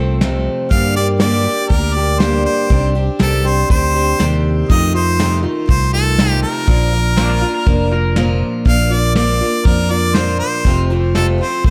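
A straight 4/4 at 121 BPM rides on a soft brush drum kit, dark and smooth with a tight kick, under a growly, amped fingered electric bass in this heartfelt, sunny honky-tonk and classic country excerpt in Bb major. A picked acoustic archtop guitar sits up front with audible finger squeak, while a bright, close-miked harmonica carries the jazz-style solo melody from 0.7 seconds with light vibrato, scooped notes and a diffuse ambient delay. A clean, twangy electric guitar with subtle chorus adds a faint background line briefly at the opening and again at 7.2 seconds, and the mix is set in light reverb.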